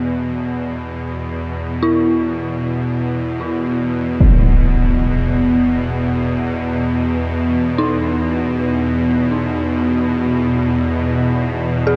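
Unfolding in free time, this unsettling dark ambient drone sits on a tense, string-like bowed-like drone with a sawtooth edge, vibrato and its own reverb up front, while a dark detuned synth bell adds eerie, inharmonic FM arpeggios with chorus and analog delay in the background from 1.8 s, and a huge, bright, low-pass-filtered impact strikes at 4.2 s as the harmony shifts from E5 to a rootless G#m/E, the whole mix steeped in wet spring reverb and heavy echo.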